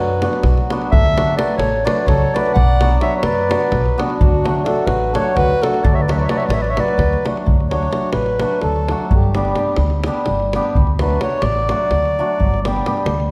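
This Balkan folk excerpt, played in the manner of a wedding band, is festive and exuberant, moving at 256 beats per minute counted in eighth notes in a straight 7/8 in D major, with chords shifting between B minor, D and G. A mellow, classical-style clarinet carries the melody until 7.3 seconds, while a reedy, round accordion plays a second line beneath it. At 7.5 seconds the accordion takes over as soloist and carries on until 12.6 seconds. A bright, shimmering hammered dulcimer rings out the accompaniment throughout. The low end comes from a pizzicato upright bass with a woody, growly tone and a deep, closely heard davul, both sitting slightly forward in the balance. The ensemble sounds as if placed in a recital hall with moderate reverb.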